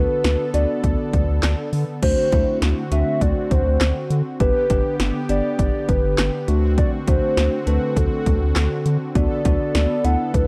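Synth-pop with a bright yet wistful mood, this clip from a longer piece sets a hollow, woody clarinet-like synth lead with chorus, tape echo and vibrato over a bell-like electric piano and a brassy, detuned sawtooth pad that carries a filter sweep. A round, deep, nasal analog bass sits up front, and a punchy analog drum machine joins at 0.2 s with kick, snare, handclaps, hi-hat and crash cymbal, its snare, clap and hats touched by a short room. The chords move from Bm7/D through D7 and G before returning to Bm7/D, all in a dry, gritty hardware sound.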